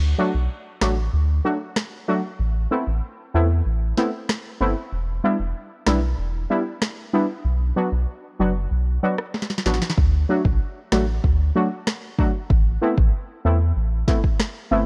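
A round, dark analog bass opens this tough, hypnotic dancehall fragment, joined at 0.2 seconds by nasal, punchy synth brass stabs thickened with chorus, moving through D, Amadd9, Em7 and Bm. An electronic afro-pop kit enters at 0.8 seconds with a deep kick, sharp snare and rim click, adding a drum fill from 9.3 to 10.0 seconds as the break ends. The dry, up-front mix carries the worn, warbling pitch drift of old cassette tape.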